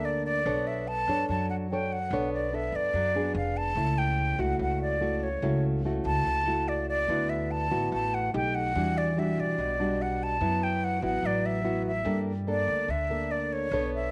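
A breathy concert flute with a straight tone and soft attack carries the melody up front from the first moment, alongside a classical nylon-string guitar, thumb-plucked with audible finger squeak, and a woody pizzicato upright bass, all sounding together throughout this 14.1-second cut from a longer bossa nova. The mood is sunny and relaxed at 145 BPM in a straight 4/4, with rich harmony moving through chords such as Bm9, D69, Em9 and Gmadd9. The close-miked flute and the up-front guitar sit in light reverb and studio ambience.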